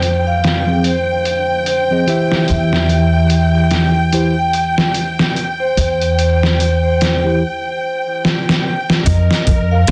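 Trip hop at 73 BPM with a swung 16th feel, hypnotic and dark, cut from a longer piece. Soft-mallet vibraphone carries a mellow, ringing melody with tape echo over lush bowed strings roughened by 12-bit sampler grit, a woody pizzicato upright bass, and a gritty, pitched-down sampler drum kit with a thumpy kick, while a very quiet downlifter sounds until 2.5 seconds. A tine electric piano with medium tremolo, played through a combo amp, comes in from 0.7 to 7.4 seconds as the chords move from Fm to C/E, before a break and a drum fill lead to F7(no3) at 9.1 seconds, all in a dense, heavily limited master with light reverb.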